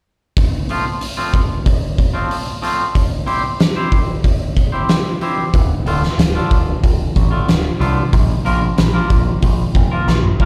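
Quiet-loud alternative rock at 93 BPM in a straight 4/4, this short passage, cut from a longer piece, feels brooding and cathartic. An oversized, low-tuned drum kit opens at 0.4 seconds, sitting up front with a boomy kick, a fat snare, toms and hi-hat, its gritty, saturated sound filling a big, pumping room. A clean, twangy electric guitar picks arpeggios from 0.7 seconds, carried by a slapback echo over a progression of F, C, D minor and a B-flat power chord. At 5.5 seconds a growling picked bass arrives, overdriven and placed up front, adding a heavy low end beneath the guitar. A drum fill closes the passage, and the whole performance comes across as a live gig heard through the venue's PA, with light reverb in the character of a recital hall.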